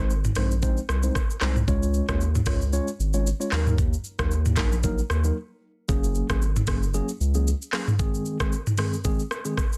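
A swung 16th-note groove at 114 BPM in 4/4 drives this sultry, smooth afrobeats excerpt. Its electronic, up-front drum kit has a knocking kick, metallic hi-hats, handclaps, rim clicks, shaker and toms, is re-recorded in a large room, and has soft clipping on the snare. A deep, thick, saturated sine sub bass with a fast attack sits up front until 7.5 s, while a mellow, clean tine electric piano heard through its built-in speakers carries the chords from Ab through Db, Ebm and Gbadd9 back to Ab; a brief break arrives at 5.4 s, and the dense, heavily limited master keeps reverb to a minimum.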